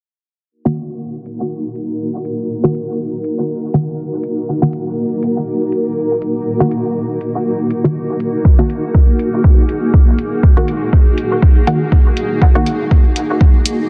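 Swung, overdriven electronic hi-hats set the groove of this deep, hypnotic dub techno fragment as a muted sawtooth chord stab, treated with chorus, phaser and dub echo and filter-swept throughout, plucks over a cloudy, detuned granular pad that pumps under sidechain and blurs in its own reverb, until a layered, overdriven kick drum lands up front at 8.4 seconds in a dense, heavily limited, low-pass-filtered master with light digital ambience.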